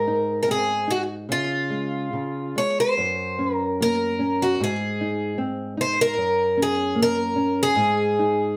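A picked twelve-string acoustic guitar carries the melody up front, its bright, shimmering, octave-doubled parlour tone sharpened by a slapback echo, in this mournful, longing fado-style ballad fragment of about 8.6 seconds. A small, thumb-plucked nylon-string guitar sits beneath it in accompaniment, moving through Ab, Db and Gb harmonies at a rubato 70-77 BPM in 2/4. Both guitars play throughout in a moderate studio reverb, tuned slightly above standard at A4 = 441 Hz.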